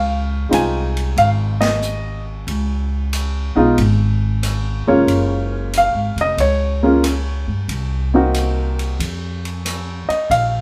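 Recorded live in one room with light reverb, this short cut from a longer jazz piano trio piece has a sophisticated, swinging mood. At 92 BPM in 4/4 with a swung eighth-note feel, it sits in D-flat major and moves from Dbmaj9 to Db5, then to Gbmaj9 and Cm7b5 before the harmony drops out at 9.0 seconds. The upright piano carries the melody between Ab3 and Ab5 with a polished, present tone and short sustain, sitting up front. Beneath it, the pizzicato upright bass has a woody, growly, thumpy character from its steel strings, also up front in the mix. The drum kit enters at 0.5 seconds, playing hi-hat, ride cymbal, rim click and a medium-tuned snare further back, with a natural studio-room sound. A brief accent from the whole band lands at 1.5 seconds.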